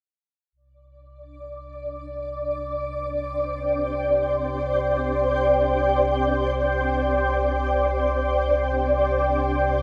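Desolate and unsettling, this dark ambient drone drifts in free time, cut from a longer piece and tuned to A4 = 439 Hz, resting on a Csus2 chord. A deep, ominous rumbling drone with a detuned, wave-folded edge and analog chorus enters at 1.2 seconds, shaped by a filter sweep, while a bright, up-front granular cloud pad with ensemble chorus joins at 1.5 seconds with blurred, evolving sustained chords high above. Both parts swim in their own built-in reverb, and a plate reverb with a 3.0-second tail leaves the whole mix dreamy and soaked.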